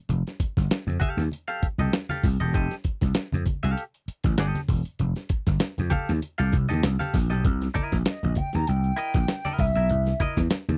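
A dry, close recording in a 1970s studio style carries this energetic, funky excerpt, built on a gritty, compressed soul drum kit with a thumpy kick and a growly, punchy slap bass, both up front, while low-tuned congas sit in the background over a lightly swung 16th-note feel. A bright, clean semi-hollow electric guitar joins at 1.0 s with a subtle chorus, picking an accompaniment over F9 and later C7#9. At 8.1 s an airy, distant concert flute takes a brief, expressive solo with vibrato and a slapback echo.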